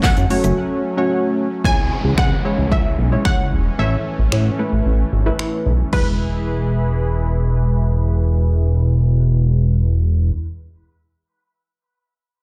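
Dance-pop in E major at 112 BPM in a straight 4/4, euphoric and upbeat, this is a short cut from a longer piece. A glossy, up-front chorused synth bass built from pulse and sawtooth tones with ring modulation and wave-folding anchors the low end, pumping against the kick alongside a punchy, funky polysynth comp with a dark sub-octave edge. A soft supersaw holds smooth, full-bodied detuned chords, while a round, bright analog pluck with dub echo carries the melody between B4 and G#5. A very quiet clean electric guitar riff sounds only in the first 0.6 seconds before a break. The overdriven deep house kit, with its woody snare, metallic hats, snaps, claps and shaker, drives until 6.1 seconds, and a downlifter and filter sweep run from 1.6 to 5.9 seconds as the chords move from F#m through C#m and A to E. The mix sits in a large studio reverb, like a big sound system in a bare room.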